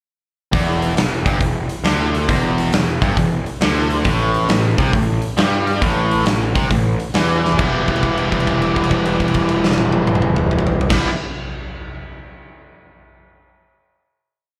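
Swung eighths in 4/4 drive this short, gritty, brooding piece of blues rock power-trio and southern rock, played live and heard through a club PA with light reverb. A bright, overdriven electric guitar, double-tracked and up front with slapback echo, plays a single-note riff while a growly fuzz bass doubles it in driving eighth notes over a huge arena drum kit with a punchy kick and bright cymbals. A drum fill at 7.4 seconds leads into a final E minor chord at 7.6 seconds, held until 10.9 seconds.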